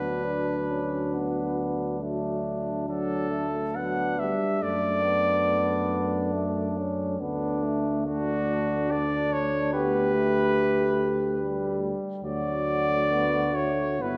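A clear, punchy cornet sings the melody from the very start of this tender, hymn-like classical brass band excerpt at 71 BPM in a flexible, rubato 3/4, over a close-miked, dark flugelhorn second line, a soft-edged euphonium with vibrato in the background, a distant, roomy trombone and a mellow tuba bass, settling into D major from 7.2 seconds inside a wet recital hall reverb.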